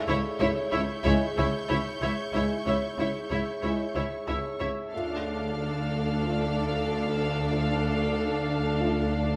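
Mysterious and uneasy, this cinematic fragment cut from a longer piece moves at 93 BPM in D Hungarian minor, shifting from C#m to Dm at 4.9 seconds. A glassy, ethereal glass harmonica holds sustained chords as a distant, focused violin section carries a narrow melody over a second violin line, a high violin texture in the background, smooth viola accompaniment, and cello and double bass sections sharing the bass. A felt-muted upright piano with audible action noise adds soft texture from 0.4 seconds, mellow French horns enter with background chords at 1.1 seconds, and a moderate scoring-stage reverb surrounds the ensemble.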